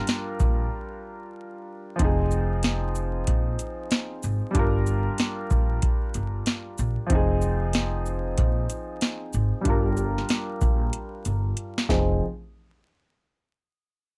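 A clear, slightly detuned upright piano colored by cassette tape and a low-pass filter opens this tough, gritty boom-bap hip-hop excerpt in F dorian at 94 BPM with a swung 16th feel, joined by a booming analog drum machine with deep kick, crisp snare, metallic hats and shaker, plus a woody pizzicato upright bass; after a break from 0.7 to 2.0 seconds the piano carries a filter sweep through to 12.2 seconds, with a drum fill arriving at 11.6 seconds, set in a dry mix with vinyl crackle.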